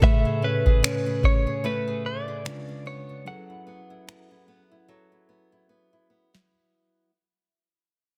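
A dense, heavily limited modern master sits in a digital ambience, with a booming analog drum machine up front whose deep kick, tonal snare with soft clipping and finger snaps carry a tape-warm character from being re-recorded in a small room. This short cut from a longer contemporary R&B piece moves at 74 BPM in 4/4 with a 16th-note swing, in F# minor, and feels sensual and longing. A direct-recorded clean electric guitar, picked and compressed with delay, carries the melody between B4 and F#5 until 5.7 seconds, while a mellow tine electric piano, clean and heard through built-in speakers, supplies the accompaniment. A fingerpicked flamenco guitar with fresh strings and audible finger squeak adds arpeggios and is the last part sounding, lasting until 7.1 seconds. The harmony moves from Amaj9 to C#7b9 and settles on F#m11, as the whole passage fades out and a drum fill arrives at 4.9 seconds.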